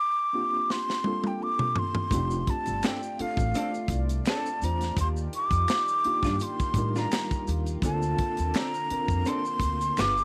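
A breathy, close-miked silver flute opens this sensual neo-soul R&B excerpt, joined almost at once by a reedy electric piano with fast tremolo and a tight, dry funk drum kit whose fill runs from 0.7 to 2.1 seconds, after which a woody, thumpy upright bass, a shimmering chorused pulse-width pad and a background tube shaker with finger snaps settle in, while a dark, clean hollow-body jazz guitar adds a second line over vinyl crackle and small room ambience.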